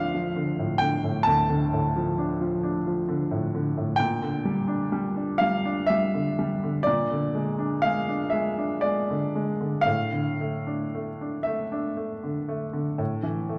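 A baby grand piano opens on a D minor chord, playing alone throughout this romantic nocturne fragment cut from a longer piece. The mood is melancholic and wistful, moving in a slow, flexible 12/8 with a rubato feel. The piano's tone is clear and natural with a short sustain, placed up front and spanning from D2 to A5. A wet concert hall reverb surrounds it, adding a lingering space around each note. The harmony passes through G minor over B-flat and a B-flat seventh, settling on a suspended A chord near 9.9 seconds before resolving to an open A at 13.0 seconds.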